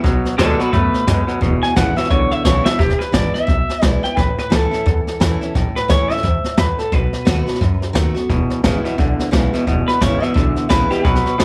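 Rockabilly at a swung 174 BPM in E major, this retro, upbeat excerpt from a longer piece is led by a bright, slightly broken-up, lo-fi electric guitar through a small old amp that carries the melody with tape echo, sitting up front over a B7, E, A progression. A clean, fingered twangy electric guitar with spring reverb plays a riff that drops out at 2.8 seconds and returns at 8.3, while a full-bodied dreadnought acoustic guitar picks accompaniment in the background. Underneath, a woody, thumpy pizzicato upright bass with gut strings and a brushed jazz kit with a boomy kick and medium-tuned snare drive the groove, with a drum fill at 2.5 seconds, all in a small room ambience.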